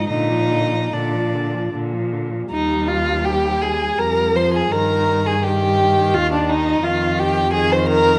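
Lyrical and serene, this short passage from a slow romantic string quartet movement in 3/4 unfolds with a flexible rubato: a focused, smooth-topped violin sings the melody over a dark, woody second violin set up front, an even, warm viola accompaniment and a rich, expressive cello bass with vibrato and portamento, all bowed in a moderate recital hall reverb.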